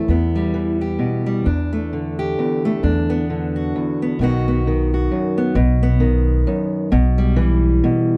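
A fingerpicked steel-string acoustic guitar and a pizzicato upright bass begin together, setting an intimate, haunting acoustic folk piece in a swung three-four lilt. The guitar sits up front as the accompaniment, its fingerpicking carrying audible finger squeaks, while the woody, thumpy bass anchors the low end beneath it. The harmony moves from Em through D5/E and Bmadd11/E to B, then settles on Em/B in the second section that starts at 5.6 seconds. A small room reverb frames the dry, close sound of a 1970s-style studio recording, keeping the duo near and personal. The bass stops at 7.8 seconds and the guitar continues briefly until the fragment, cut from a longer piece, ends at 8.2 seconds.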